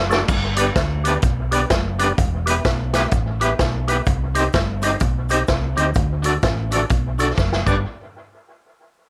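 A swung 4/4 ska groove bounces along at 127 BPM in G major, cheerful and light on its feet in this brief cut from a longer piece. The vintage drum kit sits up front with a punchy kick, a medium-tuned snare and dark cymbals, its hits trailed by dub echo, and fills open the passage at 0.0 seconds and close it from 7.4 seconds. A round, dark fingered electric bass holds the low end beneath a twangy electric guitar at the edge of break-up, colored by tremolo. A soft, flute-like tonewheel organ adds percussive stabs with audible key click through a fast rotary speaker, while a very quiet, grainy cabasa ticks in the background. The harmony moves from G through Em and a darker Cm to D before landing back on G, all set in a light reverb.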